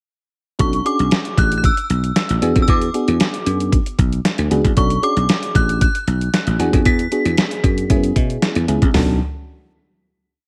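A slick, late-night early-eighties boogie funk piece in B dorian at 115 BPM opens at 0.6 seconds with everything arriving at once: a detuned 8-bit digital drum machine with a thumpy kick, medium-tuned snare, hi-hat and toms, bathed in gated reverb and set up front in a mid-tempo boogie beat. Beneath it, a dry thumbed slap bass sounds bright, growly and punchy, playing a fat syncopated boogie line with chromatic approach notes. An FM electric piano with a phaser adds mellow, warbling pushed chords in rootless voicings, touched with grace notes and a noise layer. Above them, a chiming, inharmonic synth lead with ensemble chorus rings out motif-based song phrases before falling silent at 7.9 seconds, as the harmony moving between Bm9 and E7 reaches F#9sus4. The piece resolves on a final Bm9 chord at 8.9 seconds, all within a digital ambience.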